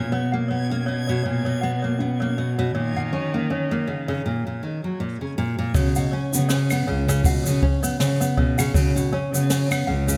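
A small room's light reverb surrounds this hopeful, pastoral folktronica excerpt at 80 BPM with a gently swung 4/4 feel, cut from a longer piece. Up front, a full-bodied nylon-string guitar fingerpicks arpeggios with audible finger squeak and digital delay over a smooth, bowed cello bass with vibrato, while a clanky, bell-like, slightly out-of-tune toy piano with delay adds a soft second line, and a dreamy, reversed, granular texture swells brightly in the background until 4.2 seconds. After a break, a boomy kick enters around 5.7 seconds, and a brushed jazz kit with a high-tuned snare, hi-hat, shaker and claves follows at 5.8 seconds to carry the second section.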